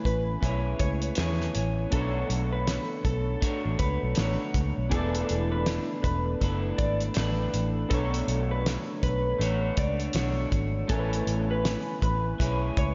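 Indie bedroom pop at a mellow, wistful 80 BPM in B dorian, with swung sixteenths and chords drifting from Amaj9 through Bm9 and E7sus4, all bathed in a moderate, lush hall reverb that gives the mix a dreamy, soft-topped haze. A bright, twangy, slightly broken-up guitar through a small old amp picks out accompaniment with subtle chorus and vibrato, while a second, compressed lo-fi guitar plays a higher line through tape echo. Beneath them, warm detuned analog keys with pulse and sawtooth tones and a filter sweep sit in the background, and a dark, foam-muted fingered bass and a cloth-damped, thuddy kit with a fat snare and tight kick sit up front.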